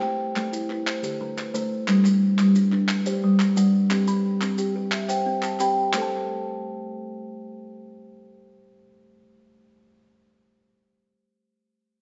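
This short excerpt sounds mellow and rounded, its top end gently dulled and bathed in a moderate recital-hall reverb. It is a trance-like, hypnotic piece of southern African traditional music built on an mbira-style interlocking cycle at 118 BPM in 12/8, where two up-front kalimbas weave arpeggios throughout: one woody and mid-forward with short thumb plucks, the other a softer, airy, ringing fingertip-plucked part with a hollow-box tone. Crisp, close group handclaps and grainy maracas, the latter entering at 0.4 seconds, drive the cycle through Am, D5, G and C until both stop at 6.1 seconds, leaving the kalimbas on their own.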